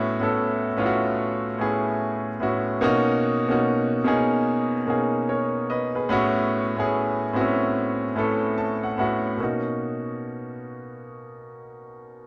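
The recording sets a concert grand piano up front in a large studio, where a moderate reverb of 0.8 seconds gives the feel of a live performance in a single room. This smooth, relaxed R&B excerpt moves at 73 BPM in 4/4 with a swung sixteenth-note feel, in B major. The solo piano sounds clear and intimate, with deep bass, long sustain and audible action noise, ranging from A2 to A5. Its harmony moves between A6/9 and Bmaj9 chords, and a piano fill from 8.2 to 9.4 seconds leads into a new section that carries on until the cut at 12.3 seconds.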